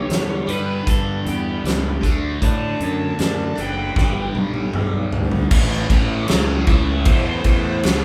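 A gritty, driving blues rock and southern rock cut at 78 BPM opens with a warm, overdriven slide guitar carrying the melody. Alongside it from the first moment are a cranked, double-tracked stack guitar playing a bright riff with overdrive and phaser, and a fuzzy, growly fingered electric bass that sits heavy beneath them. A dark, distorted lead guitar adds a second line in the background until 4.3 seconds. A huge arena drum kit with a fat snare and punchy kick enters a split second later and sits up front, and it fills from 4.0 seconds as the chords move from G and D toward A. At 5.5 seconds the slide guitar takes a solo over the band, which sounds like a power trio playing live together in a large studio with a moderate natural reverb.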